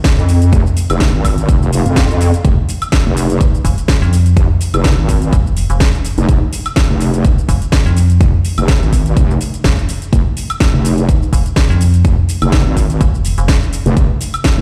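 A metallic, digital FM bass stands out most, entering at 3.6 seconds with a fast attack and decaying notes between F1 and F2, overdriven and pumping against the kick until 13.6 seconds. This gritty, aggressive bass house excerpt in F minor moves at 125 BPM in 4/4 with a 55% swing on the sixteenths. Alongside it runs a heavy, wobbling bass in the same register, a saturated blend of detuned square and sine unison voices with a resonant edge, chorus, tube saturation and sidechain pumping, sustained and compressed from 0.2 seconds onward. A punchy, layered electronic kick holds the front of the mix, joined by a house kit of cracking snare, metallic hats, shaker and woodblock, both tape-toned and re-recorded in a small room. A brief electronic swell drifts in the background around 1.6 seconds. The mix itself is dry, yet it comes across as if played on a big sound system in a bare room, with a large studio reverb around it.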